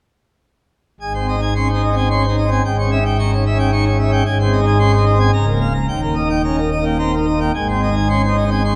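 Bathed in a wet church reverb with a 2.9-second decay, this brilliant, majestic fragment of a classical organ toccata in Ab major, tuned to A4 = 435 Hz, moves at 110 BPM in 3/4 as a solo pipe organ on full plenum with mixtures, romantically voiced and up front, sounds from 1.0 to 8.8 s across a span from Db1 to Db6, passing through chords such as Dbmadd9/Ab and Bbm/Db before settling on Eb and home to Ab.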